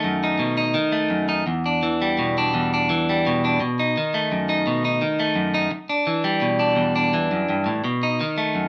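Danceable and warm, this short highlife excerpt in a straight 12/8 features a clean, picked electric guitar alone up front, moving between B7 and Em7 with light reverb that captures the feel of a band playing live in one room.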